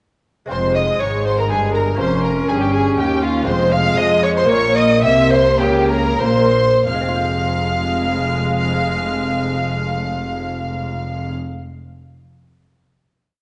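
Driving and stormy, this complete baroque-style concerto movement in F minor and 3/4 moves at 89-122 BPM. A focused, vibrato-laden chamber violin section carries the high melody, while an up-front solo violin doubles it an octave below and a second, more expressive violin section doubles it from the background. Beneath them, a distant viola section plays smooth sustained chords, a cello section walks and sustains the bass, and a lush double bass section doubles that line. A delicate, bright lute fingerpicks rolled chords on gut strings in the background. The music broadens from 2.7 to 6.9 seconds through the opening ritornello and then settles on a long final F minor chord from 6.9 seconds, all heard through a reverberant recital hall and worn, warbling old cassette tape with drifting pitch and a dulled top end.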